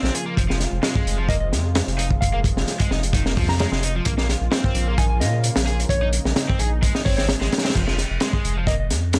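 Breakbeat excerpt with a gritty, swaggering mood, built on a crunchy, punchy breakbeat kit with a high-tuned snare and dark cymbals up front, a thick, tube-saturated sub bass, an overdriven, double-tracked electric guitar riff roughened by 12-bit sampler grit, low-pass filtering and tape echo, a lush, detuned unison pad pumping in the background under chorus and phaser, and a round, warbling FM synth lead that enters at 1.3 seconds with vibrato and tape echo through a small speaker, all in small room ambience moving from Fm to Bbm and back.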